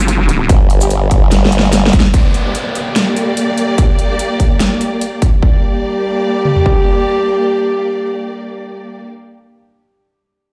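A nasal, resonant vowel-sweep wobble bass with chorus and overdrive opens this menacing, chaotic heavy wobble dubstep drop and gives way at 0.5 seconds to a sawtooth-and-sine formant-sweep wobble bass, while a layered, half-time dubstep drum kit with a punchy overdriven kick, huge snare and metallic hats hits up front, clear close-miked brass stabs arrive under a low-pass filter and tape echo, and from 2.1 seconds lush, bowed symphonic strings with vibrato and portamento pump with sidechain beside an electronic downlifter, the mix ringing as though played on a big sound system in a bare room.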